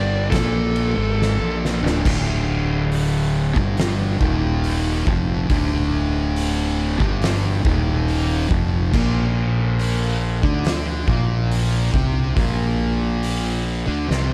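A shadowy, distorted lead guitar with digital delay opens this brooding stoner and doom metal excerpt over a thick, up-front fuzz riff guitar and a growly, overdriven fingered bass, with an oversized, low-tuned drum kit joining at 0.3 seconds. The lead stops at 1.6 seconds, and a drum fill closes the short opening before the heavy riff, the punchy tube-saturated bass and the gritty kit carry on. The kit has a boomy kick, a fat snare and dusky cymbals in a big, pumping room, while a very quiet second fuzz guitar plays the riff at the start and returns at 8.9 seconds as the chord changes. The production is dark and warm, with little reverb.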